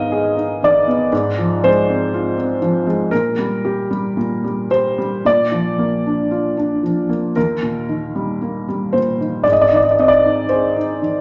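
A felt-muted upright piano opens this brief fragment, cut from a longer lyrical classical solo piece in Eb major, moving in a slow, rubato 4/4 at 55-61 BPM with a tender, intimate mood. Sitting up front, the piano has a soft, boxy, mellow tone with audible action noise, spanning Eb2 to F5 in a moderate recital-hall reverb with a rolled-off top end. Its harmony drifts from Abm through Fm/Ab and Gmadd11/Bb to Bb, arriving on Eb at 7.4 seconds before turning to Ab at 9.5 seconds.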